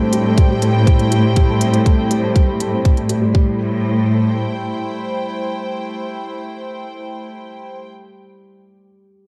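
Piano and strings electronica with a melancholic, cinematic mood, where a woody, slightly detuned upright piano riff with audible action noise and delay plays over dark, floating sustained string chords under a low-pass filter with a sweep until 3.3 seconds, a lush, up-front cello section holding the bass with sidechain pumping until 4.8 seconds, and a tight electronic kick and smooth hi-hat in studio reverb dropping out by 3.4 seconds, all in a small, lightly reverberant room.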